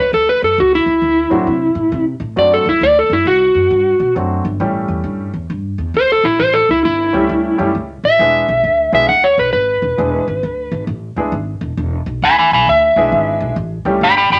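This soulful, laid-back blues, taken from a longer piece, moves at 134 BPM in 4/4 with a swung eighth-note feel in A mixolydian. An electric slide guitar carries the melody as a solo from start to finish. Its dark, slightly broken-up tone sits up front, with the slide fingered between E4 and B5. Beneath it, a pizzicato upright bass on gut strings gives a woody, thumpy foundation low in the mix. A polished upright piano enters at 1.3 s with a present, short-sustain accompaniment that also sits up front. The harmony moves from A through D7, A7 and E7 before settling back on A7, all within a moderate studio reverb that lends the band a natural sense of space.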